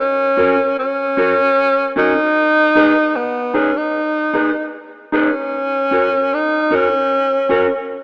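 Reggae at 76 BPM with a light 16th-note swing, this hypnotic, serious fragment tuned to A4 = 435 Hz sets an up-front breathy tenor saxophone melody, whispered and intimate with vibrato, scooped notes and a soft attack, over a dark, clean, fingered electric guitar that enters at 0.4 seconds, both parts carrying tape echo as the chords move from F# to G#m and back inside a lush hall reverb and a rough home-demo mix with a small-speaker sound.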